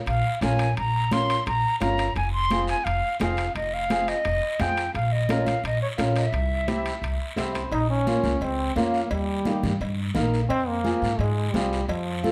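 A straight 4/4 cumbia groove at 173 BPM drives this fiery, passionate passage in F minor. Raspy guiro joins ringing metal-shell timbales and cowbell and bright, damped high-tuned congas, the latter two sitting in the background, all beneath a thumpy, woody pizzicato upright bass up front. An airy silver concert flute carries the melody with soft-attack vibrato until 7.3 seconds, while a dark, fingerpicked flamenco guitar accompanies throughout and adds a short fill at 7.2 seconds. At 7.7 seconds a clear trombone with a smooth top takes a pop-style vibrato solo over Bbmadd9, Eb and Fm chords, all in a moderate large-studio reverb.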